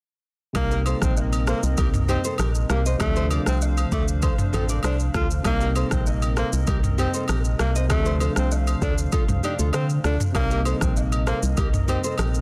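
A dense, heavily limited modern mix with light reverb and digital ambience frames this sultry, smooth afrobeats excerpt at 98 BPM in C dorian, tuned to A4 = 437 Hz, as Cm7 and Dm7 alternate throughout. A dark, up-front FM bass with an organ-like, percussive bite anchors an electronic drum kit with a deep kick, rim clicks, shaker and toms, while close, dry agogo bells and woodblock add egg shaker and group handclaps. A barky tine electric piano plays accompaniment beneath a soft, flute-like chorused pad in the background, a full-bodied nylon-string guitar riff with finger squeak carries tape echo, and a breathy tenor saxophone leads in a jazz style with vibrato and scooped notes through its own tape echo.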